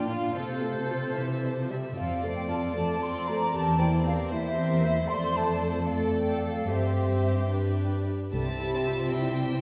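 Swaying in a rubato 6/8 at 75 dotted-quarter beats per minute, this cheerful, lively classical-period movement for symphony orchestra is cut from a longer piece, set in F major before turning to C major from 5.1 s. A dark, intimate chamber violin section carries the melody with vibrato and a soft sul tasto bow, while a bright, airy flute ensemble sings a tongued, expressive second line above it until 7.5 s. A second violin section adds a pure, floating counterline, and violas supply gentle bowed accompaniment beneath. The cello section sits up front with a woody bass. At 8.3 s the harmony settles on C as a mellow, tight French horn section enters with sustained chords and a clear chamber double bass section briefly reinforces the low end. The whole ensemble is heard from further back in a wet scoring-stage reverb.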